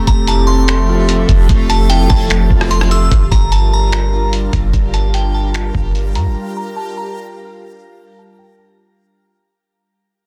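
Hazy and spacious, this atmospheric cloud-rap excerpt moves in a half-time 4/4 feel, drifting from an Fmaj7 chord to Gm7 at 3.1 seconds. A warbling, nostalgic pad holds sustained chords throughout, its detuned, mellow tone treated with chorus, phaser, reverb, a low-pass filter and sidechain pumping, while a reversed, dreamy granular texture swells faintly in the background. A glassy, crystalline FM bell carries the melody with chorus and tape echo, and a dark, slightly broken-up electric guitar plays fingered arpeggios through tape echo until 3.1 seconds. Up front sit a muffled, pitched-down sampler-style drum kit of thumpy kick, hi-hat, rim clicks and finger snaps, its snare softly clipped, and a deep, round 808-style bass that stops at 6.4 seconds. From 3.1 seconds a filter sweep and fade-out carry the piece away within a dense, heavily limited master that has little reverb overall.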